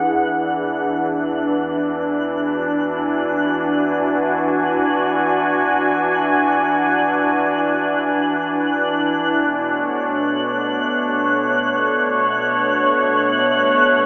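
A warbling, detuned analog pad with lush chorus holds sustained chords up front from the outset over a very quiet, round, deep bass, while a twinkling granular texture with octave-up shimmer and its own reverb fades in across this peaceful 14.1-second ambient fragment of a longer piece, the harmony moving from E9 to Bm9 at 9.4 seconds and the mix bathed in vast cathedral reverb yet narrowed to a telephone-like tone.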